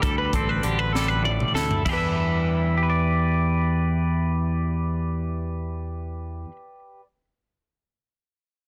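A dry, dense and heavily limited sound frames this restless, intricate math rock and midwest emo excerpt in 6/8 at 66 BPM in E minor, where a twangy, up-front electric guitar plays accompaniment, a bright twelve-string electric guitar with tape echo spins arpeggios, and a growly fingered electric bass holds the low end, while a crisp fusion drum kit with a high-tuned snare and punchy kick plays a fill from 0.9 to 1.9 seconds and stops at 2.0 seconds, just as the harmony moves from D7sus4 to Em7.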